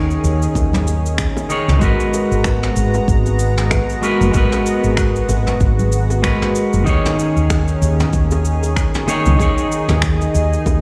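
Relaxed and smooth, this swung sunset chillout cut centres on an up-front, growly fretless electric bass beneath clean picked electric guitar through digital delay and a lush, detuned unison pad shimmering with chorus, while a distant brush kit with cabasa, finger snaps and toms and background bongos and congas add gentle texture, a deep layered electronic kick joins at 0.6 seconds, and the chords move from D#7sus4 to G#m9 and back, all heard in a roomy space as if played through a big sound system in a bare room.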